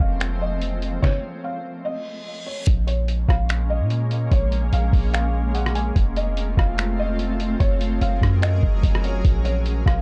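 Atmospheric cloud-rap hip hop with a hazy, ethereal half-time feel and a dark production, cut from a longer piece. Up front, a muffled, pitched-down sampler-style drum kit with a thumpy kick, fat snare, hi-hat, rim clicks and finger snaps sits with a deep, boomy 808-style bass. Beneath them, a shimmering, detuned pad with octave-up shimmer, chorus and sidechain pumping holds sustained chords under a soft, felt-muted upright piano melody shaded by a low-pass filter and delay. The music stops from 1.0 to 2.7 seconds, where an electronic reverse cymbal fills the gap from 2.0 seconds before the groove returns on a Bbm7 chord.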